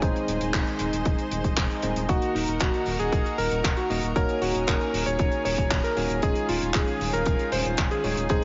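Italo disco at 116 BPM with a melodramatic, danceable mood, built on a punchy, layered electronic kick drum, a damped 70s drum kit with handclaps and hi-hat, a round analog bass holding low on Eb1 with tube saturation, a lush detuned unison pad sustaining chords with chorus, and bell-like tine electric piano stabs, all moving over chords from Ab/Eb through Ebm, Gb6/Eb and Dbadd9/Eb. At 2.1 seconds an electric grand piano enters with the melody, its clangy, vintage tone roughened by 12-bit sampler grit and trailed by digital delay. The short cut from a longer piece sits in a moderate plate reverb with small room ambience, and its heavily compressed mix has a dull, radio-like top end.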